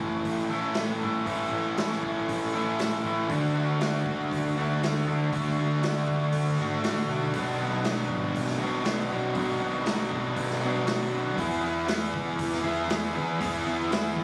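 A bright, double-tracked fuzz guitar riff opens this wistful, carefree indie rock excerpt at 119 BPM in A major, heard from the start alongside a growly, overdriven picked electric bass and a vintage acoustic drum kit with boomy kick, medium-tuned snare and hi-hat. The chords move from A to D, Bm and E across 14.2 seconds, with the compressed guitar up front, the bass punchy and amped, and the drums warm with a rolled-off top and a pumping small-room sound. Captured on a phone in the room, the mix carries light club reverb and compression.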